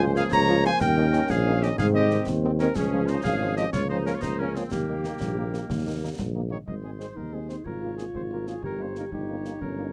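An up-front, punchy tuba anchors this proud, rousing military-style march for wind band in 6/8, beneath a present cornet carrying the melody, an airy, hollow flute ensemble that drops out at 6.1 s, a classical-style woodwind section, a mellow French horn section in the background, a dark, distant trombone section holding chords until 6.5 s, a soft-attack euphonium line entering at 7.2 s, and close, dry concert snare drum, bass drum and clash cymbals with dark cymbals, set in light reverb in a fragment cut from a longer piece.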